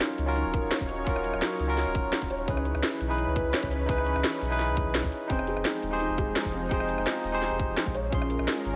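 A barky, up-front tine electric piano with vintage 12-bit sampler grit and delay sounds from the first moment of this lush, rolling liquid drum and bass excerpt at 170 BPM, together with a thick, detuned sawtooth unison pad with chorus and sidechain pumping, a felt-muted upright piano playing mellow arpeggios through tape echo in the background, and a crisp drum kit with a cracking snare, hi-hat and rim click; a round sine sub bass enters at 0.2 seconds and a tight electronic kick at 0.5 seconds, as the chords move from Ebm7 through Dbm7 and Fm7 to Bbm7 in light digital reverb.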